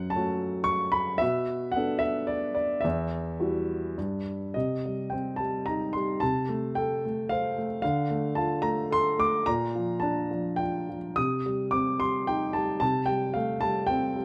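The recording sits close to a grand piano, captured with detailed microphones and a light reverb, so the instrument feels intimate and up front, with the natural sound of its action audible alongside the notes. This is a lyrical classical solo piano passage cut from a longer piece, in triple metre and played with rubato. The mood is brooding and cool, and the piano's warm tone spans a range from E2 up to Eb6. The opening harmonies move from F#m through Bm7 to Emadd9 before the chords drop away briefly at 4.0 seconds. At 4.6 seconds the music shifts to a new tonal centre, moving through Cm, Fadd9/C, Dm and Bb before returning to Cm and Fadd9/C as the passage closes at 14.2 seconds.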